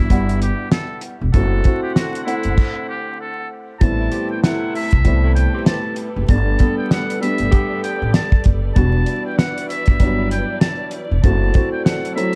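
This gritty boom-bap hip-hop excerpt opens with a buzzy, breathy muted trumpet carrying the melody over a boxy upright piano with cassette-tape grit, clear saxophone stabs with tape echo, and a woody, thumpy pizzicato upright bass, while a cloth-damped drum kit with a fat snare and tight kick sits up front from 0.1 s. After a stop at 2.6 s, a lush bowed string section joins in the background at 3.8 s, and the saxophones drop out at 8.3 s. The swung, dark production carries vinyl crackle and light reverb.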